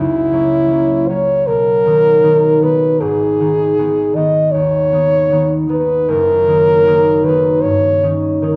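Yearning and melancholic, this short classical passage from a longer work is a romantic duo for French horn and harp, moving at 78 BPM in 4/4 with a flexible, rubato feel and tuned to A4 = 441 Hz. The warm French horn carries the melody from start to finish at 8.6 seconds, played as a solo line with gentle vibrato and soft attacks in a lyrical classical style. Beneath it, the concert harp supplies the accompaniment across the same span, its thumb-plucked notes ringing in a low-to-middle register and sitting a little beneath the horn in level, though both are up front. The harmony drifts from F#7/C# through B and Abm to Ebm/Gb, closing on Eb7/G at 7.6 seconds. A moderate recital-hall reverb with a 1.3 s decay surrounds the pair, giving the duo an intimate yet spacious concert setting.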